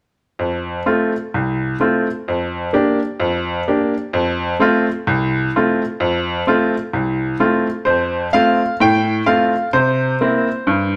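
Heard in a wet stone room with a 1.2-second reverb, this exuberant, swinging excerpt of stride piano jazz at 128 BPM in F major features a solo upright piano, woody and brilliant, placed up front and intimate with audible action noise, ranging from C2 to G5 as it moves from F through Gm7/F and back to F, then into a second section at 7.9 seconds that passes from F/A to C7.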